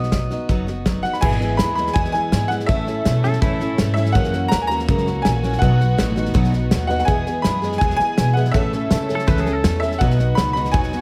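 Honky-tonk and classic country with a sunny, nostalgic mood and a straight feel, cut from a longer piece, opening on a brief solo from a clean, twangy electric guitar with tape echo that later returns in short phrases over a picked, full-bodied dreadnought acoustic guitar, a woody, thumpy pizzicato upright bass and a punchy small-room drum kit of kick, snare, hi-hat and crash. At 1.0 seconds a brilliant, worn and slightly detuned upright piano takes the melody up front, set off by slapback echo and plate reverb. From 1.2 seconds a very quiet, jangly honky-tonk piano enters alongside an intimate chamber violin section, bowed sul tasto with light vibrato and soft attacks, which sits in the background as the chords move through E, A, F#7 and B.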